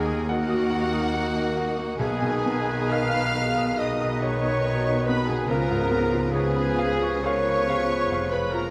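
Clear concert grand piano carries the melody alongside a lush, expressive violin section with soft-attack vibrato, opening this lush, lyrical classical fragment at a rubato 71 BPM in 4/4 and moving from D#m to G#m/B and then C#7 at 5.5 seconds. Bright oboe, very quiet clarinet, hollow, airy flute and a second violin line weave inner voices, while mellow, distant bassoon and a viola section supply accompaniment, a dark horn section holds sustained chords and a roomy trumpet section adds stabs. A focused, bowed double bass section and a close cello section anchor the bass, all set in a wet scoring-stage reverb.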